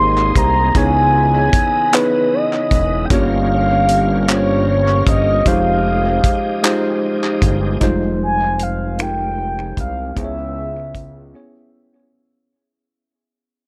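A slow six-eight R&B groove at 51 BPM in F minor sets a late-night, yearning mood. A damped, dry 70s drum kit of kick, hi-hat, finger snaps and handclaps joins at 0.4 s beneath a fat, detuned analog bass, while a round, horn-like synth lead carries the melody with chorus, vibrato and tape echo. A worn, slightly out-of-tune tine electric piano and a bright, shouting tonewheel organ with slow rotary speaker fill out chords such as Dbm9 and Fm9; the organ stops at 7.8 s as the echo-heavy mix begins to fade out, and after a break at 11.3 s the electric piano lingers last.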